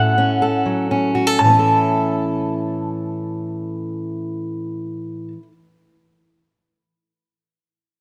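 An electric guitar through a small old amp and a fingerpicked steel-string acoustic guitar begin together, setting up a folk piece in three-four with a straight feel. The electric guitar carries the melody high in its range, its picked tone dark, slightly broken-up and lo-fi, squeezed by compression and shimmering with tremolo. Beneath it, the acoustic guitar sits up front with a woody sound from old strings, fingerpicking an accompaniment across a broad low-to-middle span. The harmony moves from F#m/A to A at 1.4 seconds, lending the short passage an anthemic yet warm mood. Light reverb and small room ambience frame this brief fragment of a longer piece, with the melody ending at 5.3 seconds and the acoustic guitar at 5.5 seconds.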